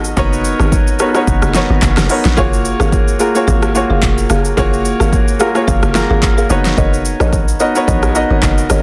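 Warm and relaxed, this short amapiano excerpt sways with a lightly swung 4/4 groove as an up-front, clear grand piano lays down lush maj9 chords over a hollow, bouncy log drum bass and a punchy, layered deep house kit of kick, fat snare with soft clipping, handclaps, smooth hi-hats, rim clicks and shaker. From 2.4 seconds a buzzing, woody marimba adds tape-echoed stabs from the background. The dry mix is dense and heavily limited, with the drums pushed forward.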